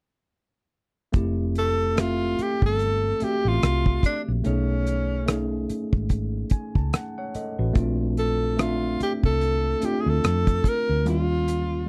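Warm and smooth, this lush 1970s-style soul passage, cut from a longer piece, sets a breathy, up-front tenor saxophone with vibrato, scooped notes and slapback echo over a worn, slightly out-of-tune tine electric piano that is lightly overdriven and plays a fill from 6.1 to 7.8 seconds, a round, dark hollow-body fingered electric bass, and a damped, dry 70s drum kit of hi-hat, tight kick and rim click with a rolled-off top, heard in a close studio recording with little reverb and a swung sixteenth-note feel.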